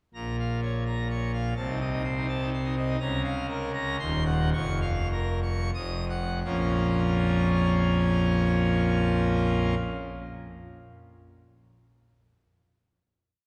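Stormy and dramatic, this short, complete classical organ toccata in Bb minor moves in 3/4 with a straight feel, its tempo ranging between 83 and 126 BPM. A solo pipe organ on full organ with mixtures sounds from 0.1 to 9.8 seconds, spanning Eb1 to Eb6 in a majestic, brilliant tone with romantic voicing. It sits up front, pouring out rippling figuration, with a second figure carried in the upper hand. The harmony moves from Bb minor through diminished chords and an Eb minor add9 over F, and the music slows down from 2.3 to 6.5 seconds before settling on a final Bb minor chord. A wet church reverb with a long 3.0-second decay surrounds the organ.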